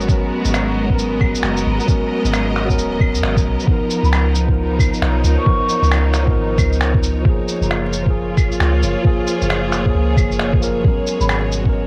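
Future garage at 134 BPM with a 16th-note swing, this rainy, melancholic excerpt of a longer piece sets a clean tine electric piano through a combo amp and lush, biting strings over a deep, round 808-style bass, all three pumping to the sidechain, while a muffled, thumpy kick and pitched-down shaker, finger snaps and claves, re-recorded in a small room, keep the groove. A distant, hollow wooden flute drifts in the background from 4.0 to 6.0 seconds and briefly at 11.2, its tone passed through cassette tape and analog delay, which also color the piano. The chords move from G#m11 through C#13 and F#maj9, with a band accent at 3.2 seconds, and the whole recording has the hazy feel of a home cassette with vinyl crackle and light reverb.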